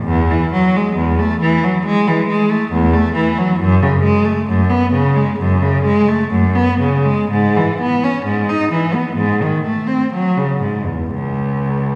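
This is a classical, baroque-style suite movement for unaccompanied cello, cut from a longer piece and lasting 12.0 seconds. The mood is radiant and dance-like, though the pulse moves with a rubato feel, and the tuning sits at A4 = 439 Hz. A single bowed cello plays alone throughout, its rich, smooth tone carried by vibrato and an even delivery across a range from C#2 to D#4. The instrument sits up front, while a wet reverb with a decay of 1.5 s gives it the air of a church or concert hall.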